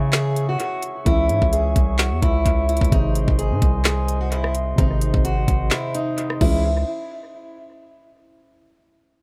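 A picked old ladder-braced acoustic guitar leads this brooding, eerie hip hop fragment, its boxy tone carrying the melody with audible finger squeak, softened by a low-pass filter and trailed by analog delay. Beneath it, a dark concert grand piano sits in the background with mellow, filtered accompaniment and deep bass, while a glass harmonica holds ethereal, slow-attack chords that float pure and glassy with a mid-forward tone. A hard-hitting 808-style bass hits punchy and heavy from the start, a sine tone with a noise layer and fast attack that decays, and a trap drum kit joins at 0.1 seconds with a knocking kick, woody snare, crisp hats, handclaps, rim clicks and a crash, both up front. The trap groove moves at 129 BPM in 4/4 with a half-time feel, in C# harmonic minor, shifting from C#m to G# and back. The kick drops out from 5.7 seconds, and the harmony gives way at 6.6 seconds as the parts fall away in a dry, echo-heavy mix.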